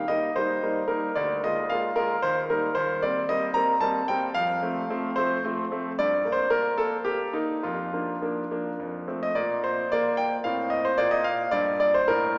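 A lush cathedral reverb surrounds this short passage cut from a longer classical-period piano sonatina, heard with a small-speaker quality. A brilliant, smooth, vintage-toned concert grand sits up front and plays alone in triple metre with expressive rubato, its deep bass anchoring a serious, dramatic mood. Around 9.4 seconds a new section begins as the harmony drops away briefly, then it settles onto a rich minor chord at 11.0 seconds.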